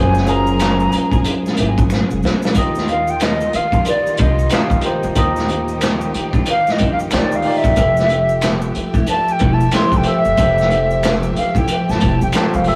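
A rough rehearsal-room sound with vinyl crackle frames this sensual, soulful neo-soul R&B excerpt, where a crunchy, muffled breakbeat kit and woody, thumpy upright bass swing beneath bell-like tine electric piano, lush bowed strings, maracas and finger snaps, and a clean semi-hollow guitar with slapback echo entering at 1.1 s, before a drum fill leads into an airy, close-miked flute solo from 2.6 s.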